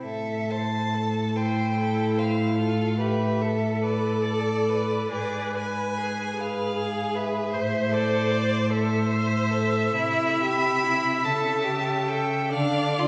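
Tender and warm, this slow, romantic classical movement for string quartet unfolds in a flexible 6/8 at roughly 40-52 beats per minute, its rubato giving the phrases an unhurried, breathing quality. The first violin carries the melody high above the ensemble with a focused, vibrato-rich tone, while the second violin sings a smooth, even inner line that sits slightly distant in the blend. The viola fills in the accompaniment with a focused sound and a silky upper register, and the cello anchors the bass close and up front, its bowed tone smooth and steady. Set in A minor, the harmony drifts through shaded chords before brightening into C major at 10.0 s, then leans toward D minor by 12.5 s. A wet recital-hall reverb surrounds the four players with a lingering, spacious glow, and the passage is cut from a longer piece.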